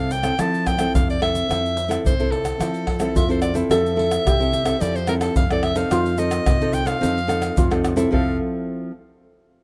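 A straight 4/4 samba-and-choro groove at 108 BPM drives this playful, festive fragment, which is cut from a longer piece in F major and opens on an Fmaj7 chord. Tube shaker, pandeiro, tamborim and a deep surdo sit up front with an acoustic feel, while a round, amped fingered electric bass holds the low end. A nylon-string guitar, fingerpicked in a classical manner and placed close to the listener, carries the accompaniment and rings on until 8.9 seconds, just past the other instruments. Over this, a bright soprano saxophone plays the solo melody in a jazz style, close-miked and shaped with vibrato, while a felt-muted upright piano adds a soft, mellow, intimate second line. Light reverb and small room ambience frame the mix, which has the rough character of a home demo.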